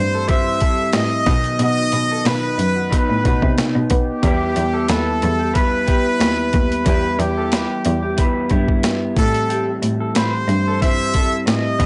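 A bright, punchy solo trumpet carries the melody from the start, bathed in lush chorus and analog delay, over a lo-fi, slightly broken-up electric guitar with chorus and vibrato and a focused, bowed cello holding down the bass. A twangy second guitar sits in the background with subtle chorus and delay, while a compressed, pitched-down boom bap kit comes in at 0.3 s, its thumpy kick and high-tuned snare up front. This mellow, lonely indie and bedroom pop excerpt has a dry, gritty sound and a gentle swing, moving from Am7 through B to Em and back to Am7.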